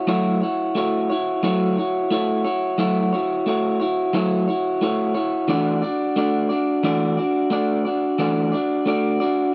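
A solo electric guitar through a small old amp opens this nostalgic, laid-back indie pop excerpt in a straight 4/4, its picked, slightly broken-up, compressed tone sitting up front with a warbly pitch drift and slapback echo as it moves from F#m7 to E9sus4 at 5.5 seconds under light reverb in an open outdoor setting.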